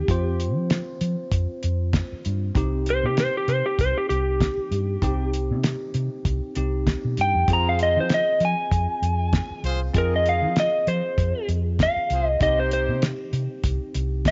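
An electric slide guitar carries the melody as a solo across the whole 14-second cut, its compressed, slightly broken-up tone sitting up front with a slapback echo. This is a smoky, soulful soul blues in C minor at 97 BPM, played as straight eighths with a light 16th-note swing in 4/4. Underneath, a bell-like tine electric piano comps through a phaser while a foam-muted, round fingered electric bass and a cloth-damped, thuddy drum kit with a fat snare and tight kick hold the groove up front. At 7.5 seconds a brilliant horn section, close-miked with light vibrato and octave doubling, adds sustained chords until 13.0 seconds, as the harmony moves from C minor to F minor before returning to C minor at 12.4 seconds. Light studio reverb gives the dark, rolled-off mix a close, intimate feel in this fragment of a longer piece.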